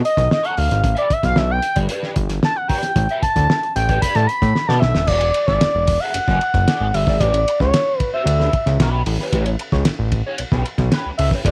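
A smooth, vibrato-laden sawtooth synth lead opens this playful, gritty funk excerpt at 113 BPM with a solo over B9 and A9sus4 chords. It is backed by a fat, detuned analog bass, a slightly broken-up, twangy electric guitar with wah and chorus sitting low in the mix, and a muffled, lo-fi drum kit with a fat snare, tight kick and dark cymbals. A drum fill at 4.6 seconds leads into the second section at 5.1 seconds, where the harmony moves to E9 and then A9, all in a small room.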